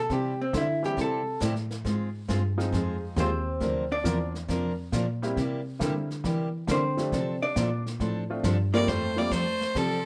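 Down-home, swinging country western swing, cut from a longer piece: a dark, clean, compressed hollow-body electric guitar sits up front and takes a solo until 8.9 seconds. Beneath it, a bowed cello carries the bass line with expressive vibrato and portamento, a bright jumbo steel-string acoustic guitar and a woody upright piano with short sustain fill in the accompaniment, and a brushed drum kit with a boomy kick keeps the swing. At 8.7 seconds an earthy, clear fiddle enters close and up front with light vibrato to take the melody, all set in a moderate club reverb.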